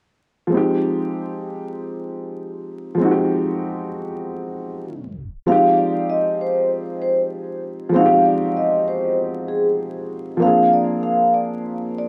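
Spring reverb gives this gritty, echo-heavy hip hop excerpt a tough atmosphere, with vinyl crackle running under the mix. At 97 BPM in a swung 4/4 and F dorian, a worn, slightly detuned upright piano comps on Fm7 from 0.5 seconds, its woody tone and audible action noise placed intimately up front. A tape stop at 4.9 seconds breaks the opening passage. At 5.5 seconds a vibraphone played with soft mallets takes the melody, mellow and metallic with a vintage, band-limited ring, a slow motor vibrato and dub echo trailing its notes. Near the close the harmony moves to Bb7 before the cut.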